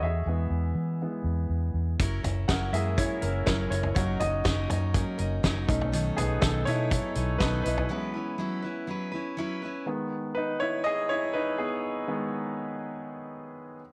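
Piano-driven pop with a hopeful feel, this excerpt from a longer piece puts a clear, polished baby grand up front over a dark, round, foam-muted fingered electric bass; a full-bodied picked jumbo acoustic guitar riff and a loose indie kit with a fat snare and tight kick join at 2.0 s, the bass and drums drop out for a break at 7.9 s, and the piano plays on alone from 9.9 s, framed by moderate spring reverb and small-room ambience.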